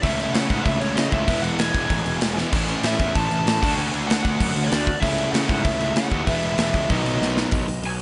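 Rowdy and upbeat, this punk rock excerpt charges along at 192 BPM in a straight 4/4, with a dark, overdriven lead guitar through a small cranked amp carrying the melody over tape echo while crunchy double-tracked rhythm guitar and bright, compressed fuzz guitar churn out riffs in the background. A growly, punchy fuzz bass drives underneath, and a big, up-front rock drum kit with a punchy kick, bright cymbals and a medium-tuned snare throws in fills at 2.4 seconds and again at 7.2 seconds. The chords cycle through A/C#, E, A and D before closing on B, and the mix sounds dry and close with little reverb and a dulled top end.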